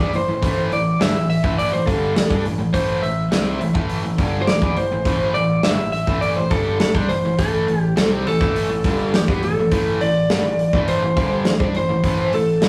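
A straight 4/4 hard rock groove at 103 BPM in A minor drives this heavy excerpt, where a slightly broken-up, compressed lead guitar carries the melody over a bright, double-tracked overdriven riff guitar, a punchy picked bass and an up-front acoustic drum kit with punchy kick, medium-tuned snare and hi-hat, all sitting on a single A minor chord in a rough rehearsal-room sound with tube saturation and a small room reverb.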